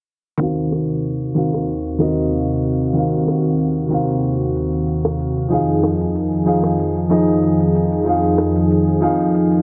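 Wistful and warm, this sunset chillout excerpt rests on a lush, detuned sawtooth-and-square unison pad with chorus and a slow attack, sitting up front beside a concert grand piano with deep bass, softened by a low-pass filter and digital delay. A filter sweep runs through the pad as the harmony moves from Ebm69 to Fm7 at 5.5 seconds, while tight, high-tuned bongos played with hard hands sit in the background from 0.7 seconds and a gritty, overdriven shaker sounds very quietly beneath. The dark production carries a gentle sixteenth-note swing and a moderate scoring stage reverb.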